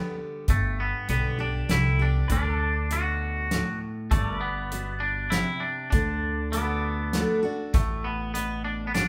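A moderate large-studio reverb wraps this short cut from a longer piece, which sounds like a band playing live together in one room. It is a heartfelt, sunny honky-tonk and classic country tune in 3/4 at 99 BPM, set in G major and moving between G and D chords. A bright, clean, compressed electric guitar carries the twangy picked melody up front. A full-bodied picked steel-string acoustic guitar accompanies it, and a clean pedal steel guitar, played with fingerpicks and slide, adds sustained chords with volume swells higher up. At 0.5 s the natural country drum kit enters with a punchy kick, a fat snare and hi-hat. It arrives alongside a woody, thumpy pizzicato upright bass, and both sit prominently in the mix.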